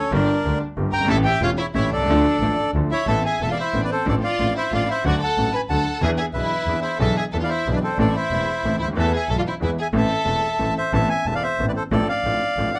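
Tango at 184 BPM in 3/4 with a rubato feel, this melancholic, dramatic excerpt moves from D harmonic minor into A harmonic minor at 3.1 seconds. A reedy, up-front bandoneon carries the melody over a dark, lush bowed violin section that adds an expressive second line with vibrato and portamento until 10.7 seconds. A woody, polished upright piano with long sustain and a focused, distant bowed double bass provide accompaniment and bass, all in a wet club reverb.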